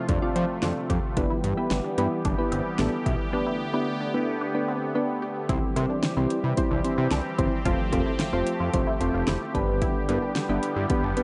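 A dark, plate-reverb-washed mix carries this upbeat, bright synth-pop cut, where an overdriven deep house drum kit with punchy kick, fat snare, metallic hats and cowbell, and a thick, saturated sawtooth analog bass sit up front beside an airy, evolving pad with shimmer reverb, while soft, round electric-piano-like synth keys add accompaniment and a juicy, squelchy blip pluck spins phased, delayed arpeggios in the background as the harmony moves from F through Em/G and Gadd9 to a new section on C at 5.5 seconds.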